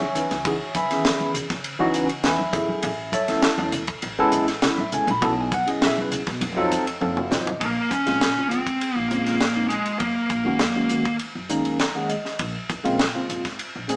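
A clean tine electric piano with medium tremolo and phaser, played through a combo amp, opens this nocturnal, driving electric jazz fusion excerpt at 100 BPM in C# minor, alongside woody pizzicato upright bass and soft-handed congas in the background. A tight, dry funk kit with a high-tuned snare joins at 0.2 seconds. After a drum fill and an electric piano fill, the music moves to Bb minor at 7.6 seconds, where the congas stop and a smooth, dark overdriven lead guitar plays a picked melody up front until 11.2 seconds, all in a moderate stone-room reverb that sounds like a band playing live together through a small speaker.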